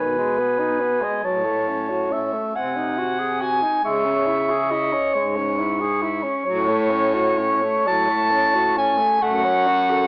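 Solemn and yearning, this rubato classical fragment in 6/8 is cut from a longer piece, with a single-reed quartet in a wet recital hall that has been passed through worn, warbling old cassette tape with pitch drift and an AM-radio tint. A mellow clarinet carries the melody high above a clear, close-miked alto saxophone that sits up front with the second line, while a distant, roomy tenor saxophone with vibrato supplies the accompaniment and a baritone saxophone with light vibrato holds the bass. The harmony moves through G#m/B, F#m/A and G#7/B# to C#m, then settles toward F#m from 6.4 seconds.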